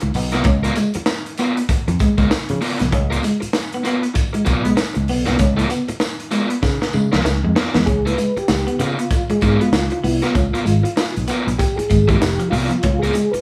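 A strutting, playful funk groove starts at once on a Db6 chord, with a crisp fusion drum kit, a fingered electric bass and a crunchy overdriven guitar all entering together at 97 BPM in 4/4, the sixteenths carrying a light swing in Db mixolydian. The drums sit up front with a high-tuned snare, a punchy kick and a gritty, saturated room sound, while the dark, round bass sits just as close, and the picked overdriven guitar comps with a plate reverb behind it. A clean, hollow-body electric guitar plays the picked riff in its middle range, and a jingly tambourine stays in the background. A drum fill at 6.6 seconds leads into a percussive tonewheel organ solo from 7.9 seconds, its soft, flute-like tone shaded by chorus vibrato, a slow rotary speaker and plate reverb. Vinyl crackle and small-room ambience give the whole track a vintage feel, and it plays as a section cut from a longer piece.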